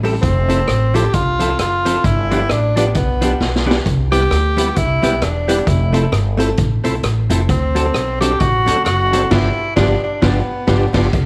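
A swung, joyful ska groove in 4/4 drives this short excerpt, with a boomy-kicked street-band drum kit and a woody, growly upright bass up front, a clean hollow-body jazz guitar with slapback echo comping beside a lightly overdriven tonewheel organ whose percussive stabs sit in the background through a slow rotary speaker, and a breathy subtone tenor saxophone carrying the cheerful melody with gentle vibrato and scooped notes, marked by a drum fill at 3.4 seconds and a band accent from 9.3 seconds.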